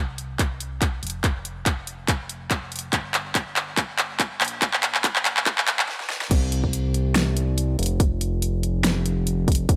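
A half-time 4/4 groove at 142 BPM, swung 55% on the 16ths, drives this lush, playful future bass fragment, with a fat, saturated sawtooth analog bass pumping against the sidechain from the start and a big-room dance kit and hard-clipped electronic kick joining almost at once. Through the build-up, a filter sweep and a drum fill of overdriven, layered claps, hi-hats, crash and a huge filtered snare build toward a brief stop at 5.9 seconds, before the drop lands at 6.3 seconds. The tape-warm kick, kit and thick, fast-attack bass all sit up front in a light digital ambience.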